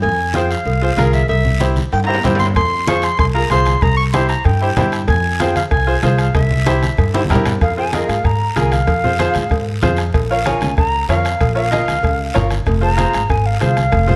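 Danceable and fiery, this cumbia excerpt runs at 190 BPM in F minor, opening with a breathy, jazz-style clarinet solo over a woody pizzicato upright bass, a bright, short-sustain upright piano, background congas, ringing vintage cowbell and timbales, and a raspy close guiro, with a soft-beater bombo entering at 2.6 seconds and short drum fills at 1.9 and 7.1 seconds before a mellow, hollow silver concert flute with vibrato takes over the melody at 7.6 seconds, the chords moving to Bbm at 10.1 seconds, all under light reverb.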